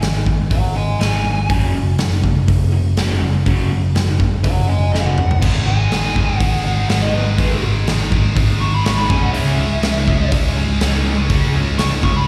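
A heavy, menacing hard rock excerpt at 122 BPM in straight 4/4 opens with an overdriven, double-tracked hollow-body guitar riff with slapback echo sitting in the background, a growly, amped electric bass and a huge arena drum kit with a punchy kick and bright cymbals up front; a dark, smooth overdriven lead guitar solo with slapback echo enters at 0.5 seconds over chords moving through G#5, F#5 and C#m, and after a drum fill at 4.9 seconds a scooped, high-gain, distorted double-tracked guitar riff joins at 5.4 seconds, the whole performance captured live through the venue's PA with recital-hall reverb.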